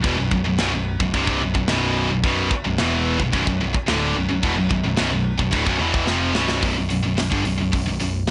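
A blown-out, overdriven recording in a small room, its top end dulled, carries this dark, heavy metal excerpt at 109 BPM in straight 4/4, opening on a B minor chord. Three bright, picked guitars grind out riffs together: an overdriven one, an up-front high-gain one, and a double-tracked distorted one set in the background that drops out at 6.6 seconds. Beneath them sit a growly, punchy overdriven bass and a tight acoustic kit with bright cymbals, a medium-tuned snare and a soft-clipped kick, whose fill from 6.1 seconds leads into a new section.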